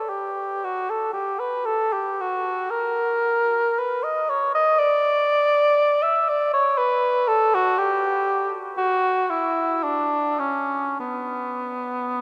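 Meditative and mournful, this classical excerpt of about 12.2 seconds features a mellow solo cor anglais played up front with light vibrato and free, rubato phrasing, its tone ringing into the long, wet reverb of a cathedral.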